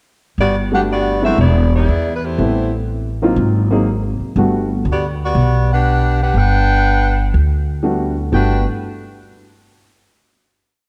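A saxophone section and a pizzicato upright bass open this short, joyful big band swing piece in G major at 121 BPM. The tight, smooth-topped saxes play a motif-based melody of call phrases, harmonised in four-part block voicing with vibrato and a soft attack, over a woody, thumpy gut-string bass in a two-feel, while a vintage upright piano adds syncopated, rootless comping from 0.7 to 4.7 seconds and returns near the end. The dark, warm production sits in moderate scoring-stage reverb, and the piece closes on a final chord from 8.3 seconds.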